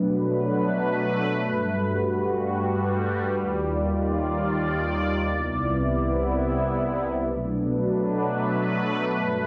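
In free time, this short, floating hip hop cut rests on a single sweeping resonant pad that plays alone throughout. Its detuned sawtooth and sine tones evolve with a filter swell, slow attack and sustained chorus-and-delay shimmer, sitting bright and up front. Bm7, Gmaj9, Ebmaj7 and Cmaj9 drift by in a dreamy haze before Bm7 returns at 7.3 s, all wrapped in a huge ambient reverb and a dark production.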